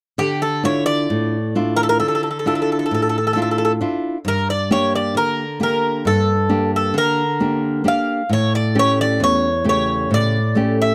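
A dry, close 1970s-style studio sound with light reverb frames this wistful, reflective Greek folk excerpt in 9/8 at 133 BPM in D harmonic minor, where an up-front, metallic Greek bouzouki with double, partly octave-doubled strings picks the melody over a fingerpicked, classical nylon-string guitar with fresh strings, the two moving through Dmadd9, Gm and A7 across roughly 10.9 seconds.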